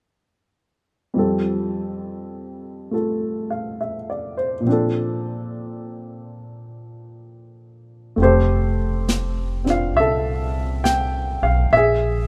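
Intimate and romantic, this short jazz ballad excerpt moves at 68 BPM in a gentle swung 4/4 in F major, opening with a dark, mellow baby grand piano alone, its short sustain and audible action noise up front over chords moving from F to Bbmaj7. At 8.2 seconds a woody pizzicato upright bass and an airy brush drum kit join, the brushed snare and hi-hat sounding polished in a small room, as the harmony shifts to Fmaj9 and then Bb7(no3). The sound is dry and close, with some lossy compression artefacts.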